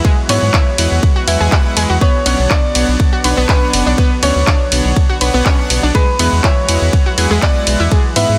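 Emotional and driving, this 8.4-second progressive house excerpt at 122 BPM in B dorian sets an open baby grand piano melody over chorused, warbling analog plucks, soft detuned supersaw stabs entering at 0.3 seconds, a lush pad in the background, a round, deep analog bass, a punchy up-front kick and a house kit of handclaps, bright hi-hat and ride, with the piano, pluck and supersaw carrying dub echo, the melodic parts and bass pumping to the sidechain, and chords moving from Eadd9 to Bmadd9 and back to Eadd9 at 5.9 seconds in a dense, heavily limited mix with light digital reverb.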